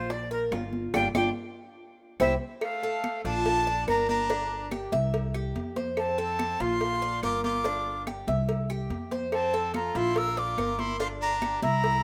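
Relaxed and sunny, this Cuban son and guajira excerpt in F major moves at 143 BPM in a straight 4/4. A breathy, chiffy jazz flute sits up front carrying the melody while a metallic, double-strung Cuban tres picks bright arpeggios over a dark, woody pizzicato upright bass. Thick-skinned, high-tuned congas played with hard hands, round low-tuned bongos and cowbell, and background claves fill in the percussion. After the flute's opening solo and a drum fill at 2.4 seconds, a brilliant, punchy trumpet with light vibrato enters at 2.6 seconds as a distant second line, all under a light reverb.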